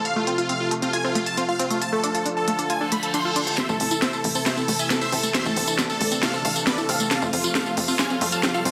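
Driving and bittersweet, this uplifting trance passage, cut from a longer piece, sets a huge, euphoric supersaw lead carrying the melody through phaser and dub echo over a lush, detuned supersaw pad, while an up-front techno kit of cracking snare, smooth hats and tambourine and a nasal, chorused arpeggio synth push things along. A very quiet reverse cymbal and riser appears at 2.9 seconds, and from 3.6 seconds the music moves into a build-up with a drum fill and a filter sweep on the arpeggios, joined at 3.7 seconds by a tight, punchy sawtooth sequencer bass. A moderate hall reverb surrounds the dense, heavily limited master.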